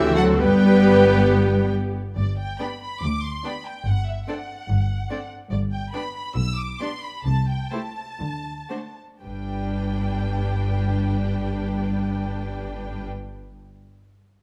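Spirited and cheerful, this quick classical-period orchestral passage in G major at 110-147 BPM, cut from a longer piece and played with rubato, sets a warm, vibrato-rich violin melody over a second violin line, a clear, focused viola accompaniment up front, and a lush bass of cellos and rich double basses, while a pure flute, a mellow clarinet and punchy horn chords sound only in the opening 1.9 seconds before the tempo slows between 4.7 and 9.2 seconds, all captured with close, detailed microphones in a moderate recital-hall reverb.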